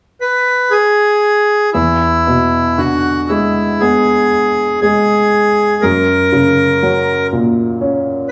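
Nostalgic and tender, this Celtic slow air in E mixolydian drifts at a rubato 59 BPM in 4/4. A reedy, hollow accordion carries the melody up front from 0.2 s, and a woody upright piano enters at 1.7 s with intimate accompaniment over E7 and then F#, its action noise audible. The players share one room, with a moderate large studio reverb and small room ambience giving this excerpt from a longer piece a live, present feel.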